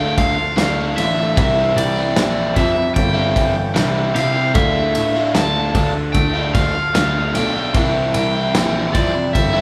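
A straight 4/4 pulse at 75 BPM carries this cathartic, melancholic post-rock excerpt in D minor, where a loose indie drum kit with punchy kick, medium-tuned snare and dark ride cymbal drives from 0.2 seconds while a double-tracked overdriven electric guitar riff sits up front, a crunchy overdriven guitar sings a brilliant melody through spring reverb, a twangy clean guitar fingers arpeggios in the background with its own spring reverb, and a baby grand piano holds the bass, all cycling between Dmadd9 and C as a band playing live together in one large, reverberant room.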